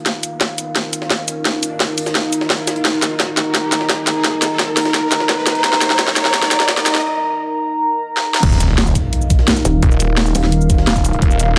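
Dark technical drum and bass in an aggressive, tense mood, this passage is cut from a longer piece and opens with a build-up under a moody, detuned analog pad that holds sustained chords, coloured by chorus, phaser and sidechain pumping. An up-front drum and bass kit drives the build with a cracking snare, bright hats, crash, toms and cabasa, all overdriven and thinned by high-pass filtering. Beneath it sit a knocking electronic kick, overdriven and set back in the mix, and a very quiet, gritty, pitched-up jungle sampler-style kit with a high-tuned snare and tape warmth. A riser and impact effect sits in the background, and after a brief break the drop lands at 8.4 s, where a snarling distorted saw bass enters, growling and sidechain-pumped. At 9.7 s a pulsing, heavy pluck wobble bass with chorus joins briefly, all within a moderate plate reverb.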